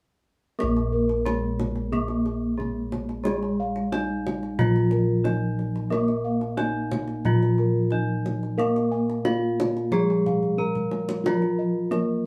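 Ceremonial and serene, this short cut from a longer Javanese gamelan piece moves in a straight, unhurried four, with the whole ensemble playing together live in one room from 0.6 seconds. A bronze metallophone carries the melody with a ringing, horn-mallet strike and a boxy, close presence, while a second bronze metallophone supports it lower down, its bright, paired tuning giving off shimmering beats. Bossed gongs weave arpeggios above in a round, mellow, padded tone, and a deeper set of bossed gongs anchors the bass with dark, smooth, beating resonance, sitting strongest in the mix. The kendang adds tight, band-limited hand drumming with a vintage feel, breaking into a fill from 10.4 to 11.3 seconds before stopping at 12.1 seconds. A short, wet studio reverb wraps the ensemble in a close, intimate space.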